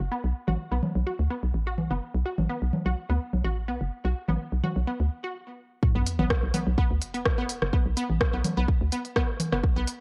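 A hollow, bouncy FM bass opens this cool, sparse minimal techno piece with a light swing, pumping alongside a squelchy, nasal blip pluck that carries chorus and tape echo, while overdriven congas join just after. The pluck's filter sweep builds through the first section until a brief stop, and the drop at 5.8 seconds brings a punchy, up-front electronic kick and a very quiet sub drop, followed at 6.1 seconds by a minimal kit of clicky hi-hats and rim clicks. Recorded at home on cassette with light reverb, the mix has a lo-fi, tape-soaked grain.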